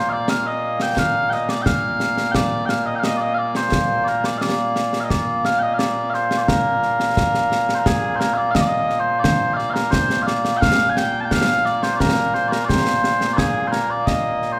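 A straight 2/4 pulse at 87 BPM carries this short excerpt of proud, ceremonial Scottish pipe music in Bb major, cut from a longer piece. Mellow, sweet small bagpipes play the continuous solo melody up front, spanning Bb2 to A5, while concert snare and bass drum enter at 0.3 seconds with a close, dry acoustic sound and bright cymbals. The tune moves through two sections, the second beginning at 7.9 seconds, all set in a wet recital hall reverb of a church or concert hall.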